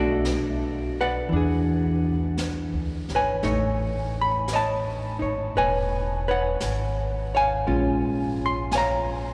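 A dark, clean hollow-body electric guitar and a woody, thumpy upright bass played pizzicato on gut strings open together, both up front, in this intimate, late-night jazz ballad cut from a longer piece, moving at a slow 57 BPM in 4/4 with a gentle swing on the eighth notes. At 0.2 seconds a softly placed brushed drum kit with a high-tuned snare and hi-hat joins. The guitar's picked chords drift from Bm7 through E13 to a lingering Amaj9#11 before touching Bbm7, all bathed in a long cathedral-like reverb that gives the trio a spacious, churchly glow.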